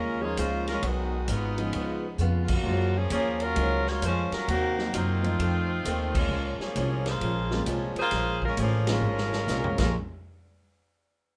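A clear saxophone section carries the melody up front with light vibrato and a smooth top over a woody, dark pizzicato upright bass, while a boxy, picked ladder-braced acoustic guitar with finger squeak and a short-sustain grand piano sit in the background, and a distant, roomy big-band drum kit with a punchy kick enters at 0.4 seconds to add fills as the full band punches out accents in this brassy, swinging big band jazz passage, cut from a longer piece and set in a moderate club reverb.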